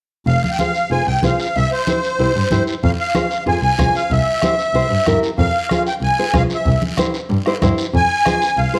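Cumbia excerpt at a driving, danceable 188 BPM in F harmonic minor, built on Fm and C chords. A reedy, shimmering musette accordion carries the melody up front, over a bowed double bass with vibrato and portamento. Fingerpicked nylon-string guitar with audible finger squeak, raspy guiro and thick-skinned congas struck with hard hands fill out the groove. A soft-beater bombo joins in the background at 2.8 s, all set in a moderate echo chamber reverb.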